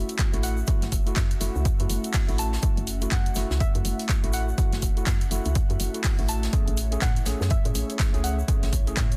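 A dense, heavily limited modern mix with little reverb opens this short late-night deep house excerpt, set in 4/4 with a 60% swing on the sixteenths. A punchy analog kick sits up front, joined by a layered, tape-warm house kit of handclaps and hi-hat, a very quiet jazz brush kit playing hi-hat and a medium-tuned snare, and a grainy, bright tube shaker kept close and dry in the background. Underneath, a woody, dark FM bass with tube saturation and sidechain pumping anchors the groove, while a gritty overdriven tine electric piano, run through a combo amp, plays stabs with digital delay. An airy, breathy pad holds sustained chords in the background, pumping with the sidechain, and a warbling, nostalgic lo-fi pad adds a very quiet texture with its own built-in reverb. A soft, round pluck carries the melody high up with chorus and delay until it stops at 8.7 seconds, as the harmony moves from F#m7 to Amaj7 at 6.5 seconds.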